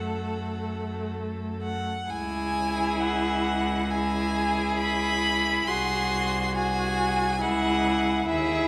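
A warm, vibrato-laden first violin carries the melody up front in the upper register, bowed smoothly and evenly over a slow, rubato 4/4 pulse of about 56-70 BPM in C# minor, giving this classical string quartet fragment a melancholic, elegiac mood. Beneath it, a rich second violin holds a middle line, a distant viola fills in the accompaniment, and the cello anchors the bass up front, all bowed with steady vibrato as the harmony moves from F#m to C#m at 2.1 s, through G#7/B#, and back to C#m. A wet scoring-stage reverb with a 1.7-second tail surrounds the quartet in a spacious, resonant sound.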